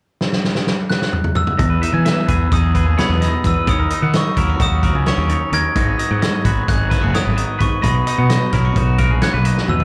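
Wistful yet bright, this math rock and midwest emo excerpt in a lopsided 9/8 opens with a loose indie drum kit rolling through a fill from 0.2 seconds, its punchy kick and gritty, saturated tone sitting up front, before a sparkling glockenspiel melody rings in at 0.9 seconds with slapback echo. At 1.6 seconds the band arrives over an Emaj7, D#m7, G#m7 and Bmaj7 progression: a growly, fuzz-drenched fingered bass leads the mix, one bright, twangy clean electric guitar carries the accompaniment, and a second, warm twangy guitar spins high arpeggios through spring reverb and slapback echo. The whole performance comes across as a live gig heard through the venue's PA, wrapped in small-room club ambience, with another drum fill near 9.6 seconds.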